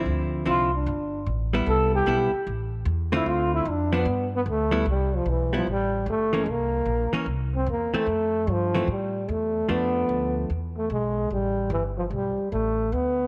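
Small-group swing and bop jazz at 149 BPM in C major, sophisticated and swinging, with a breathy, whispered trombone carrying the melody up front over dark, clean, picked hollow-body guitar accompaniment that drops out at 10.5 seconds and a woody, growly pizzicato upright bass, all set in a moderate spring reverb as the harmony moves from Dm9 through Cmaj7, C7 and Fmaj7 to close on Gadd9 in this excerpt from a longer piece.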